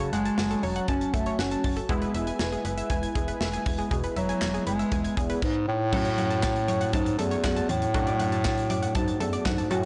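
A blown-out, overdriven mix with a dulled top and a lush hall reverb frames this melancholic, nocturnal synth-pop excerpt in F# minor at 119 BPM, moving from F#m and E to F#m and D/F#. A warm, classical-style bass clarinet carries the melody up front over a punchy, polished studio kit with handclaps and crash, a snappy, metallic FM bass with saturation, and a detuned, funky sawtooth polysynth comp set in the background. A bright, round analog pluck spins delayed arpeggios, while a smooth, warbling vintage pad holds chords until 5.4 seconds.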